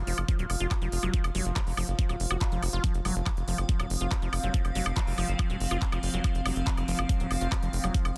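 A straight 4/4 pulse at 141 BPM drives this intense, psychedelic trance excerpt, where an up-front knocking electronic kick and a layered kit of crisp hi-hats, handclaps and woodblock play alongside a tight, punchy sawtooth sequencer bass, while a squelchy, resonant acid bass riff with phaser, 12-bit grit and digital delay weaves over a wave-folded drone with moving overtones and a blurred granular cloud pad in the background that sustain an F5 chord, the three of them pumping against the kick in a dense, heavily limited digital space.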